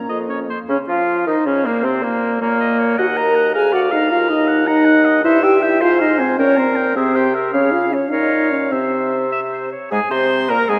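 A wet scoring-stage reverb surrounds this urgent, restless slice of a quick classical-period movement for wind quintet in a straight 6/8, cut from a longer piece. A pure, distant silver flute carries the tongued melody with vibrato, while a vintage-toned oboe plays a second line and a bright, present clarinet and a mellow, soft-attacked French horn, set up front with light vibrato, fill out the accompaniment. A warm bassoon holds the bass with a touch of vibrato as the harmony turns toward a new minor centre at 5.2 seconds.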